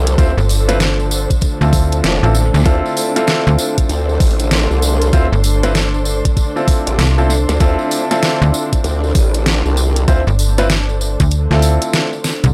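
A growling, wobbling bass, bright and saturated with chorus, sits up front in this funky, playful glitch hop drop in D minor at 97 BPM, cut from a longer piece, alongside a snappy, metallic FM slap bass and a knocking, overdriven electronic kick. Overdriven pop drums with a deep snare and a jingly, close tambourine ride a swung groove over a Dm7 chord. Clear, present baby grand piano stabs with tape echo pump on top, while a dark, woody string section and a warbling, nostalgic tape-like pad pump beneath in the background. The growl bass stops at 10.2 seconds and the kick drops out at 11.3 seconds before a drum fill at 12.2 seconds, all captured in a dry, gritty hardware sound.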